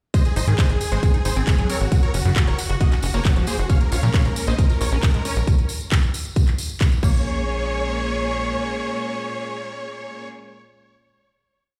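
Driving four-on-the-floor kick at 135 BPM in straight 4/4 anchors this short, emotional and soaring uplifting trance piece in Bb minor, set entirely in a drop that runs to 7.3 seconds before a final hit rings out to the end. The punchy, up-front electronic kick is joined by a house kit of programmed clap backbeat, metallic closed and open hats and crash, with a jingly hand-played tambourine tucked in the background, all falling away by about 7.2 seconds. Underneath, a tight sequencer bass gallops in sixteenths with a sawtooth-and-square filter pluck and moving notch, while a squelchy, resonant liquid acid bass cycles a 16-step sequence behind it, touched with chorus and digital delay. On top, a huge, euphoric supersaw lead carries a repeating sixteenth-note riff in thirds and sixths over a pedal note, detuned and compressed, pumping with sidechain and trailed by digital delay. From 3.7 seconds a clear studio string section adds bowed, sustained chords with light vibrato and an intense, biting edge, moving through Bbm7 and holding with the lead until 10.3 seconds. 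The overall sound is dry, yet carries the sense of a big sound system filling a bare room.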